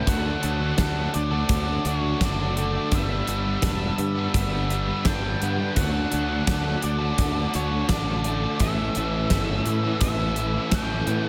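A straight 4/4 pulse comes from a gated 80s acoustic drum kit, sitting up front with a fat snare, a tight kick and hi-hat in a big, airy room sound, while a bright, direct fingered electric bass anchors the low end; both come in at 0.1 s. This short cut from a longer shoegaze and dream pop rock piece feels wistful and hazy as the chords move from D to G, back to D and on to A. Layered guitars fill the space: a thick, dark fuzz guitar plays a riff in the background, thickened by ensemble chorus, alongside a biting overdriven guitar riff trailed by reverse reverb. Deeper in the mix, an electric guitar through a small old amp fingers twangy, lo-fi, compressed arpeggios with a slightly broken-up edge, analog chorus and tape echo. Over the top, an octave-fuzz lead guitar carries the melody with a dark, distorted tone and tape echo, all within light reverb and small room ambience through to 11.3 s.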